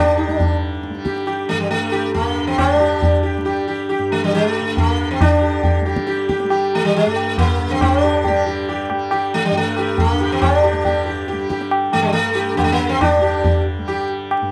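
A dark, vinyl-crackled recording with a moderate spring reverb frames this short excerpt of Hindustani classical music, which has a meditative, longing mood. It moves at 138 BPM in a straight 3/4, with a sitar carrying the melody between G3 and G4, up front and bright, its plectrum-plucked tone buzzing through a halo of sympathetic strings. Beneath it, a warm, softly plucked tanpura holds a shimmering drone from G2 to G3, sitting well back in the mix. The high-tuned tabla enters at 0.4 s, close and dry with a short ring to each stroke. The music shifts into a new passage at 5.2 s, and the sitar falls silent at 14.1 s while the drone and drums carry on for a moment longer.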